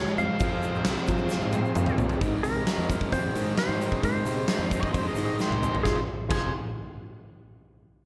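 A twangy, compressed lap steel carries the melody over a punchy arena drum kit with a fat snare, in a swaggering, driving classic rock cut in F minor at 132 BPM, moving from Fm to Ab and on to Fm7. A double-tracked distorted guitar riff and a growly fingered bass drive underneath, while a dark overdriven lead guitar adds a brief second line until 1.9 seconds, a very quiet woody piano plays a fill from 0.9 seconds, and an octave-fuzz lead enters at 4.8 seconds. A thick tonewheel organ on slow rotary and a grainy tube shaker sit low in the mix, all set in a big arena sound with recital hall reverb, cut from a longer piece.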